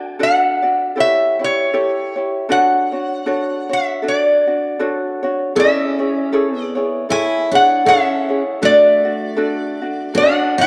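A wet spring reverb with a 2.2-second tail washes over this dreamy, relaxed Hawaiian fragment, cut from a longer piece and moving at an easy 78 BPM in 4/4 with a gentle swing on the eighth notes. Up front, a lap resonator guitar carries the melody between C#5 and A5, its slide tone metallic and nasal, with a bright edge from the fingerpicks. A light, fingerpicked ukulele sits close as well, giving warm accompaniment from the start in D major over D, A7 and Dmaj7. At 5.6 seconds the music moves to A major on an Amaj7 chord, and a picked steel-string acoustic guitar enters with a second line, its dreadnought body bright and full, with a finger squeak audible. The passage settles back onto Dmaj7 before it breaks off at 10.7 seconds.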